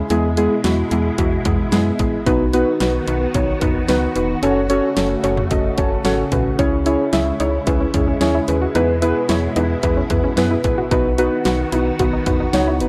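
Nocturnal and melancholic, this synth-pop excerpt moves at 111 BPM in a straight 4/4, cycling through E, B, F#m and C#m as a silky string machine holds sustained chords through phaser, ensemble chorus and shimmer reverb, beneath muted, felt-like synth keys that sit up front with chorus and a dark, intimate tone. A snappy FM bass with a metallic attack and a punchy electronic pop kit of kick, fat snare, hi-hat, toms and cowbell drive the groove, while the keys play a fill from 5.5 to 6.6 seconds. At 6.6 seconds a very quiet, round pluck adds mellow arpeggios, all set in light reverb within a dry, gritty hardware sound.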